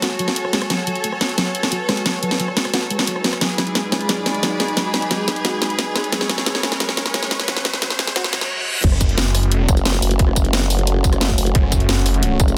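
Futuristic and aggressive, this dark technical drum and bass passage opens with a build-up in which a moody analog pad, a soft round pluck arpeggio under a filter sweep, and a clear symphonic string section with light vibrato gather over a drum fill with a cracking snare, hi-hat, rim clicks and tambourine, while a background riser climbs toward a reverse cymbal. At 8.8 seconds the drop hits with an overdriven, tight electronic kick and a snarling, saturated saw bass up front, joined at 9.7 seconds by a formant-sweep wobble bass with chorus. The dense, heavily limited mix sits in light reverb, with sidechain pumping on the pad, pluck, strings and saw bass.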